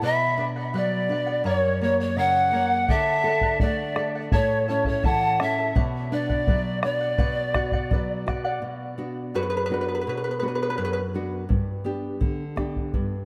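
A steady 2/4 pulse at 84 BPM with a straight feel carries this earthy, melancholic Andean folk excerpt in B minor, moving through Bm, F#, D, A and later G. A breathy pan flute with a soft chiff sits up front carrying the melody, shadowed by a distant, reedy large quena on a second line, both touched with vibrato and delay. Underneath, a fingerpicked charango adds shimmering double strings, some octave-doubled, while a full-bodied classical nylon-string guitar, also up front, supplies the low accompaniment with audible finger squeak. A deep, dark bombo, close and dry, enters at 2.9 s to anchor the beat. The flutes fall away around 8.2 s, and from 8.6 s the charango takes a solo in the second section. A lush plate reverb soaks the whole mix in a dreamy haze.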